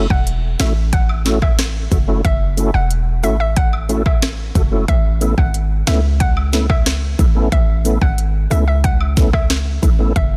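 A tape-warm, up-front electronic afro-pop drum kit with a deep kick, sharp snare and smooth hats drives this sunny, summery dancehall excerpt, joined by a heavy, hard-hitting 808-style bass with a fast attack and decaying sine tone. A fat, lightly overdriven tonewheel organ with chorus vibrato, key click and a slow rotary speaker supplies the chords, moving from F#m7 to Aadd9 at 4.9 s. Above it a hollow, bouncy, detuned square-wave pluck carries the melody through chorus and delay, while cabasa and woodblock sit in the background of a dry, dense, heavily limited modern mix.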